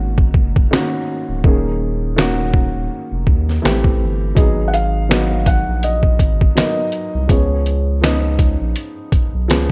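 Hazy and reflective, this lo-fi hip hop excerpt moves at 82 BPM in G# dorian with a gentle 16th-note swing, set in a small, dusky room. A dark, woody upright piano, filtered and short in sustain with audible action noise, carries the chords over a thick, saturated sine sub bass and an up-front, gritty, pitched-down trip hop drum kit of thumpy kick, snare, hi-hat and finger snaps. At 4.7 seconds a soft, felt-muted upright piano, also filtered, adds a brief, intimate high melody that ends at 8.0 seconds.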